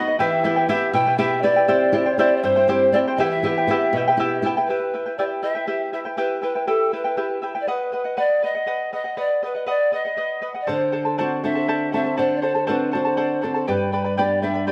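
Set in 6/8 at 80 beats per minute, counted in dotted quarters with a straight feel, this melancholic, wistful Andean folk passage sits in E minor and is cut from a longer piece. A reedy bamboo pan flute carries the melody throughout, its airy tone marked by vibrato, a soft attack with a touch of chiff, and a distant placement. Up front, a fingerpicked charango accompanies from start to finish, its double strings giving a shimmering sound with some octave-doubled courses. A fingerpicked flamenco guitar adds low support in the opening stretch, drops out at 4.6 seconds, and returns at 10.7 seconds. The harmony moves from Em through C and back to Em, then shifts to B, D7 and finally G, all set in a moderate recital hall reverb.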